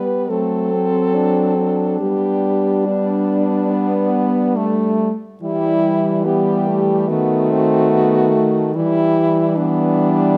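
From the first moment, four French horns sound together in this tender, lyrical classical passage for horn quartet, cut from a longer piece and played with rubato in 4/4: a close-miked horn with warm vibrato sings the melody up front, a second vibrato-tinged horn sits in the background with accompaniment, and two mellow, soft-attack horns with light vibrato carry the second line behind and the bass up front, while the harmony moves from F#dim through G and Em to D#dim7 and Em7 under light reverb and a detailed, intimate sound.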